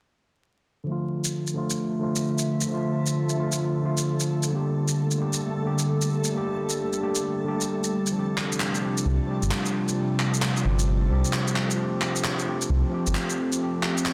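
Melancholic and ghostly, this future garage excerpt at 132 BPM in D minor swings on up-front electronic shaker and handclaps with a soft-clipped snare, while a barky, gritty overdriven tine electric piano with tape echo and a filter sweep sits beside a warbling, nostalgic tape-like pad with chorus, a reversed, dreamy swelling texture drifts in the background from 2.8 seconds, and a deep, rumbling detuned saw bass arrives at 9.1 seconds, set over vinyl crackle in a dense, heavily limited master.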